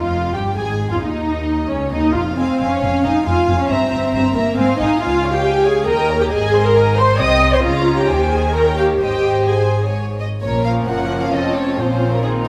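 A quick classical-period movement for string orchestra in Ab major, this graceful, spirited passage moves in 3/4 at 134 BPM with a rubato feel, and it is cut from a longer piece. The violin section carries the melody with a pure, floating tone bowed sul tasto, while a second violin line sits beneath it with the same soft attack. The viola section stands up front in the mix, dark, woody and lush with vibrato, carrying the accompaniment. The cello and double bass sections share the bass, the cellos sounding distant and both sections soft-edged and pure. The harmony moves through suspended and minor colours before settling on Ab around 9.0 seconds, then turns toward Bbm and F7 in a new section from 10.4 seconds. A wet scoring stage reverb gives the ensemble a generous sense of space.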